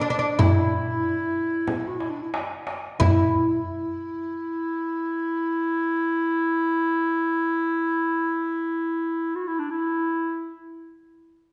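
Heard from further back in a reverberant recital hall, the recording has a soft, rounded top end and a lingering ambience. This melancholic, longing fragment of Turkish makam ensemble music is cut from a longer piece. It moves in 10/8 at 88 BPM, counted in eighths, and slows down through its opening. A fretless, plectrum-plucked oud with woody double strings carries the melody near the front. A mellow, classical-style clarinet plays a second line and holds on alone after the oud stops at 6.3 seconds. Beneath them, a deep, crisp metal-shell darbuka and a small, bright frame drum played with soft hands sound only briefly, including a drum fill that ends at 3.0 seconds, before the music moves into a new passage.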